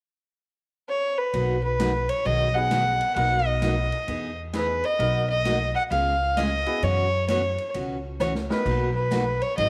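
A small room with light reverb frames this cheerful, swinging western swing clip, cut from a longer piece. A dark, boxy fiddle with light vibrato carries the melody up front from 0.9 seconds. From 1.3 seconds a thumpy pizzicato upright bass on gut strings, a full-bodied picked jumbo acoustic guitar and a distant, roomy big-band drum kit join in, while a slightly detuned upright piano with audible action noise sits brightly in the background from 2.6 seconds, over a drum fill near the end.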